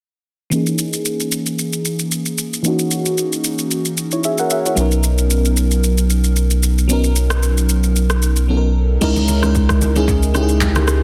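Hypnotic and deep, this amapiano excerpt moves at 113 BPM in 4/4 with a gentle 16th-note swing, set in C# dorian. An FM electric piano layered with a soft pad carries the harmony from the start, lush and dreamy with a mellow, chorused tone, shaped by a low-pass filter sweep through the opening stretch as it moves from C#m69 to Bmaj7. A layered deep house drum kit runs alongside it with a deep, tape-tinged kick, handclaps, rim clicks, shaker and crash cymbal, dropping out briefly from 8.5 to 9.0 seconds before the return to C#m69. A round sine sub bass arrives at 4.8 seconds and sits up front, while low-tuned, ringing acoustic congas slip in near the end, well back in the mix. Light digital reverb frames a dense, heavily limited modern master.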